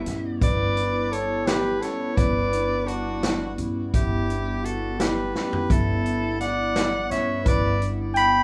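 Progressive instrumental band music in an uneven 5/8 meter, this bright, intricate excerpt moves at 170 BPM counted in eighths with a straight feel in G lydian, opening on a G6 chord. A bright, up-front soprano saxophone carries the melody with vibrato, a smooth top and a touch of digital delay, while a mellow flugelhorn plays a second line with light vibrato and scooped notes in a jazzy manner. Beneath them, a hollow, flute-like pad with a slow attack and chorus sustains the accompaniment, and a woody, growly pizzicato upright bass anchors the low end. A marimba played with soft mallets adds round arpeggios in the background, and a swinging big-band drum kit sits up front with a punchy kick and medium-tuned snare, breaking into a fill at 5.3 seconds. The whole has the rough feel of a home demo mix, with a small room and a wet studio reverb around it.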